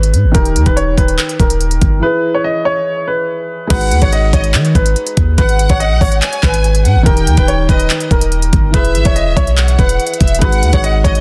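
Menacing and melancholic, this trap cut from a longer hip hop piece moves at 143 BPM with a half-time feel in G# minor, as a clear concert grand piano carries the melody through a low-pass filter and digital delay over a soft, felt-muted upright piano, a deep, sine-like 808-style bass with long decaying notes, and an overdriven electronic drum kit with a knocking kick, crisp hi-hats, handclaps and crash cymbal placed up front. A break arrives at 2.0 seconds, and at 3.7 seconds a lush, distant violin section with expressive vibrato enters as a second line, its own digital delay trailing behind it. The studio reverb and dense, heavily limited master keep the sound modern and packed.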